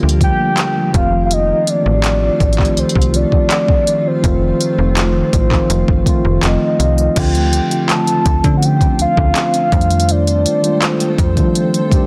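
A mellow tine electric piano, a cloudy granular pad with built-in reverb and sidechain pumping, and a snappy FM bass with a metallic attack open this late-night, sensual contemporary R&B excerpt at 82 BPM, moving from Gm7 to F7. A smooth, up-front electronic drum kit with a soft kick, handclaps, hi-hat and crash arrives almost at once, and a round, dark octave-layered synth lead carries the melody with chorus, tremolo and tape echo. The electric piano plays a fill from 6.1 to 7.2 seconds before the second section shifts to Dm7 and F13, all within a dense, heavily limited modern mix with light reverb.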